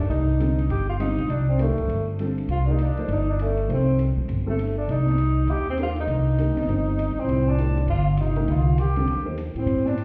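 Heard muffled as if through a wall with stone-room reverb, this cool, spiritual modal jazz excerpt swings at 200 BPM in C dorian over a Cm69 chord, with an up-front tenor saxophone carrying a vibrato-laden, soft-attack melody through plate reverb and analog delay, a woody, growly pizzicato upright bass, an intimate grand piano with audible action noise until 9.4 seconds, a boomy-kicked drum kit in the background, and a roomy bass clarinet adding a second line from 7.2 seconds.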